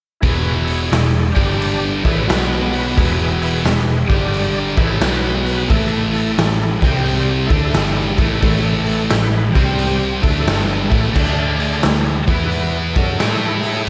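Driving and swaggering, this short excerpt cut from a longer blues rock and southern rock power-trio piece swings at 88 BPM in 4/4, with a double-tracked, fuzz-soaked guitar riff up front over a punchy, saturated garage drum kit of kick, snare, hi-hat and crash, a round, foam-muted picked bass, and a gritty overdriven tonewheel organ holding sustained chords in the background through slow rotary speaker and chorus vibrato, all moving from E through G, B and A power chords to C, D and E before closing on A, in a lush hall reverb that gives a big arena sound.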